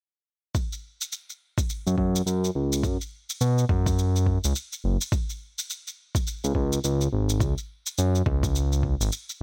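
A smooth synth bass stands out at the front of this earthy, hypnotic organic downtempo piece, entering at 1.9 seconds and moving between F#1 and B2. Its tone blends sawtooth, square and triangle waveforms with ring modulation, and its notes have a fast attack and a sustained body. Before it, a soft, produced electronic kick drum opens the passage at 0.5 seconds, placed up front and roughened with overdrive, and an overdriven electronic shaker follows almost at once. The groove runs in 4/4 with a loose swing on the sixteenths. Bright, 1980s-style digital ambience frames this short cut from a longer piece.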